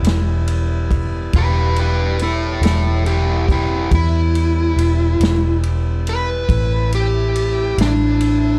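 A dark, lightly reverberant production frames this mournful, soulful slow blues in E minor at 47 BPM in 12/8, cut from a longer piece, where a warm horn section holds sustained chords beneath a round, foam-muted fingered electric bass up front, an acoustic drum kit with a punchy kick, medium-tuned snare and dark ride cymbal, and a smooth overdriven lead guitar that enters at 1.4 seconds for a picked solo as the harmony moves from Em to Am at 6.5 seconds.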